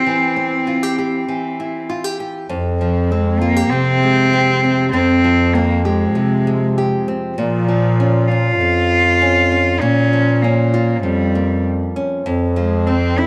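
Acoustic folk with a wistful, haunting mood, cut from a longer piece, in which a close, intimate cello sings the melody with light vibrato and an airy sul tasto bow over bright, fingerpicked nylon-string guitar, joined at 2.5 s by a mellow, soft-edged bass clarinet on the bass line, all set in a moderate echo-chamber reverb.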